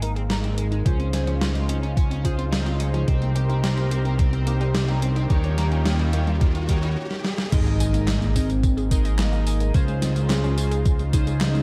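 Opening at once on a lush, warbling unison pad, a punchy pluck arpeggio, glossy chorused polysynth stabs with a filter sweep, a fat, saturated analog bass and a gated 80s drum machine with handclaps and tambourine, this romantic, dreamy synthwave cut moves at 108 BPM in Ab major, with a thumpy, up-front electronic kick joining at 0.9 s and a bright, overdriven stack guitar riff sitting in the background until 6.9 s. A very quiet riser and impact arrive from 3.9 s, and after a brief stop and a drum fill, a velvety synth lead with vibrato, portamento, cassette tape and tape echo carries the melody from 7.5 s over Absus2 and Dbmaj7 chords. The mix carries light reverb, and the tape-warm drums are re-recorded in a small room.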